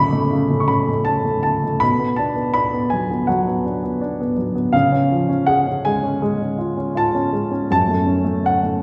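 A warm grand piano plays alone in this short classical excerpt, cut from a longer piece, with a lyrical, melancholic and reflective character in F# minor. The tempo sits around 81 BPM in 4/4, but the rubato feel lets the phrasing breathe freely. The piano spans from F#2 up to D6, and its intimate, up-front sound carries audible action noise and a short sustain. Across its 8.8 seconds the harmony moves from F#m7 through Bm and C# before settling back on F#m at 7.7 seconds. A wet recital hall reverb surrounds the instrument, giving it the resonance of a church or concert hall.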